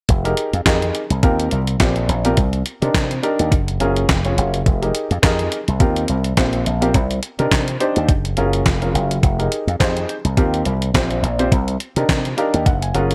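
Slap bass run through an envelope filter sits up front in this slick, funky slice of early-eighties boogie funk at 105 BPM, its bright, punchy electric tone carrying a 16th-note swing over a looping Fm11, Eb69, Cm9, Gbmaj9 progression. A crisp 8-bit drum machine with a thumpy kick, fat snare, hi-hat and handclaps drives the groove, re-recorded in a small room and given gated reverb. A dark, mellow grand piano adds intimate accompaniment with audible action noise and plays a fill from 12.1 seconds, in a dry mix cut from a longer piece.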